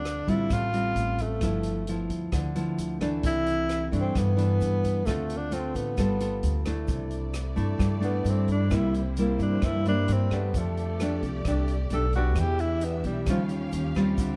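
A straight bossa nova groove in 4/4 moves along at 132 BPM in C major. The drum kit plays hi-hat, rim click and a punchy kick in a natural-sounding studio room, with a grainy, very quiet tube shaker behind it. Upright bass plucks a woody, growly low line, while a fingerpicked nylon-string guitar sits up front with a classical tone and the occasional finger squeak. Breathy tenor saxophone carries the melody in a mellow voice with light vibrato, scooped notes and a smooth top, and it takes a solo from 6.9 seconds. At that moment a lush bowed string section enters with expressive sustained chords, adding a close, symphonic cushion as the harmony moves from C69 through F69 to Eb9. Light reverb and a dark, warm production give this romantic, sunny fragment of a longer piece an intimate glow.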